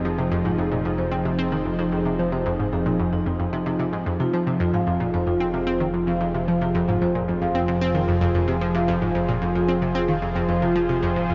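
A bright, detuned analog pluck riff sits up front in this expansive, mysterious stretch of sequencer-driven space music, carried by chorus and tape echo over a lush unison pad holding sustained chords on Fm7. Soft-mallet vibraphone arpeggios ring with a metallic tone through tape echo and shimmer reverb, while a fat, saturated analog bass holds the low end, and at 4.1 seconds a pulsing, tempo-synced gated texture enters, barely audible. The mix is bathed in huge ambient reverb and the worn warble of old cassette tape, its pitch drifting and its top end dulled.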